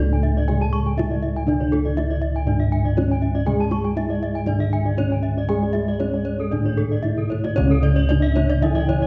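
Balinese gamelan at 119 BPM in C# pelog, brilliant and shimmering, where mellow padded-mallet bronze metallophone carries the melody over a boxy background metallophone accompaniment. Two ringing arpeggio lines, one close and full and the other bright and airy with a horn mallet, sparkle above round, up-front bossed gongs on the bass. A very quiet, tight kendang adds a drum fill at 6.9 seconds before a pure, hollow bansuri with vibrato enters in the background at 8.2 seconds, all in a dark production with a moderate recital-hall reverb.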